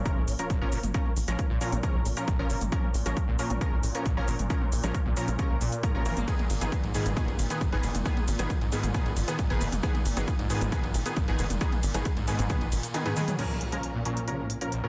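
Driving peak-time techno at 135 BPM in a straight 4/4, dark and relentless, cut from a longer piece and moving from Bbm to Abm at 6.3 seconds before returning to Bbm. An overdriven, up-front electronic kick anchors the drop alongside a layered techno kit of smooth hats, ride, crash, shaker and toms, the kit's hats, cymbals, percussion and toms pumping against the sidechain, while a tight, punchy sequencer bass with a dark sawtooth-and-square pluck drives underneath. Aggressive rave stabs, thick with detuned unison, ring modulation, chorus and delay, sit above a squelchy, resonant acid bass riff that stays in the background, gritty with distortion and a cassette-tape haze. A very quiet swarming drone on Bb2 adds tense, granular texture throughout. A drum fill at 12.9 seconds leads into a brief closing passage at 13.4 seconds where the kick and sequencer bass have dropped out, a filter sweep moves across the acid bass, and an electronic impact lands, all set in a moderate stone-room ambience within a dense, heavily limited master.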